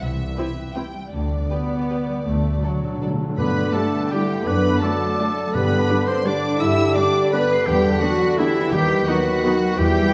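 A sweeping, elegant orchestral ballroom waltz in G major and 3/4, moving at a rubato 151-184 BPM, opens on muted, veiled violins carrying the melody over ringing, bright harp arpeggios and dark con sordino cellos and double basses, joined at 0.4 s by a second violin line and violas. Hard-mallet timpani play a fill from 2.3 s. From 3.4 s a clear oboe, mellow clarinet and distant pure flute add second lines over a warm bassoon, and a close-miked, mellow French horn section enters at 3.7 s with sustained chords, all set in a reverberant recital hall.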